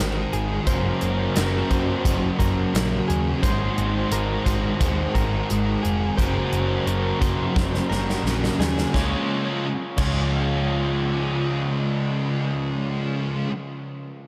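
Drenched in a huge ambient reverb, this dreamy, blissful shoegaze and dream pop excerpt sets a dark, up-front fuzz guitar riff with ensemble chorus against an overdriven guitar riff bathed in reverse reverb, a clean, direct-recorded guitar playing arpeggios in the background through subtle chorus and diffuse delay, a round, punchy foam-muted bass, and a polished, gated 80s drum kit with bright cymbals and a tight kick that plays a fill from 7.6 seconds until the music moves into a new section at 8.9 seconds.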